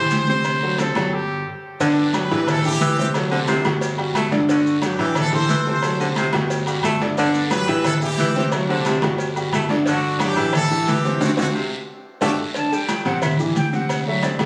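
A brilliant, tight horn section carries the melody from 1.8 seconds in this joyful, festive salsa excerpt, after a bright trumpet with tape echo opens it, while a baritone saxophone with light vibrato plays a second line, a clear concert grand piano and a dark, punchy fingered electric bass accompany, and background congas, cowbell, guiro, maracas, agogo bells and timbales fill out the percussion, until a band accent and drum fill give way to a breathy silver concert flute solo at 12.6 seconds, heard in a light reverb with the sound of a phone recording in the room.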